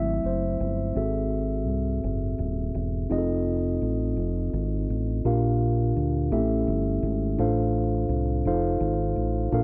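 A mellow tine electric piano accompanies this slow gospel excerpt, its clean, direct tone sitting up front as it carries the harmony across a broad span of its range. Beneath it, a fingered electric bass holds the low end with a dark, round and punchy amped sound, just as close in the mix. Both parts play together from the start at 0.0 seconds to the end at 9.6 seconds, moving through a straight 6/8 metre with a solemn, soulful mood. The harmony opens on a tense G#7b9b13 before settling onto F7, and a new passage beginning at 5.2 seconds steps through Bb6, A7 and Dm7/A before returning to F7. The sound recalls a dry, intimate 1970s-style studio session, lightly touched by digital ambience.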